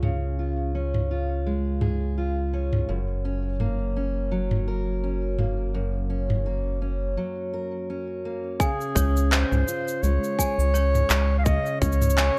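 A dark, full-bodied fingerpicked steel-string acoustic guitar, softened by a low-pass filter and touched with digital delay, spins arpeggios over a round, deep analog bass and an organic electronic kit of cabasa, handclaps and toms in this pastoral, playful folktronica piece at 84 BPM in Db major with a gentle 16th-note swing, and after a break at 7.2 s a mellow clarinet melody, a clanky, slightly out-of-tune toy piano with delay in the background, and a tight electronic kick drum join at 8.6 s in a dry mix.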